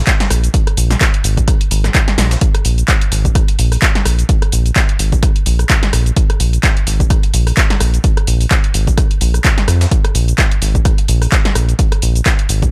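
This hypnotic, trippy acid house excerpt opens at 0.1 seconds with a punchy analog kick drum set up front, carrying a tape-warm weight, alongside an analog drum machine of handclaps, hi-hat, rim click, shaker and a punchy snare, its snare, clap and hats touched by a short room. Underneath, a very quiet breakbeat sampler-style kit adds gritty, overdriven, compressed hi-hat and a medium-tuned snare. At 0.3 seconds a round, deep bass arrives up front, blending sawtooth, sine and triangle tones into a detuned, dark, sustained line with a fast attack, ranging from Ab1 to F2 and colored by tube saturation and sidechain pumping. The groove runs at 128 BPM in 4/4 with a light 16th-note swing, and a drum fill lands at 2.2 seconds. The mix stays mostly dry, with little reverb, keeping the kick and bass firmly forward across the single section.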